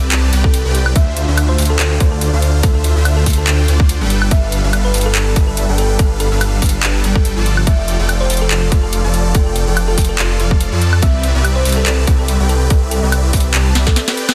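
Huge, bright supersaw chords with phaser and a thick, chorused detuned saw bass, both with sidechain pumping, open this euphoric future bass excerpt in C major at 143 BPM with a swung half-time feel, as an up-front, hard-clipped electronic kick and an overdriven trap kit of sharp snare, metallic hi-hats, handclaps and woodblock drive a progression from Dm9 through G9 and F69 to Cmaj9, while a round, tine-like thumb-piano-like pluck with chorus and digital delay sits dark in the background, and a drum fill at 13.8 s leads into a brief break at 14.0 s within a dense, heavily limited master.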